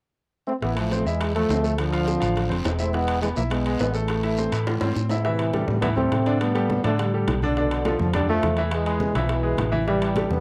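A punchy, up-front trombone section carries the fiery melody in this fast salsa excerpt at 208 BPM in A minor, over a bright, woody upright piano, a dark, round hollow-body electric bass, tight high-tuned bongos, ringing metal-shell timbales and a raspy guiro that drops out at 5.2 s, when distant low-tuned congas enter after a drum fill, all in a dry, close 1970s-style studio sound with light reverb.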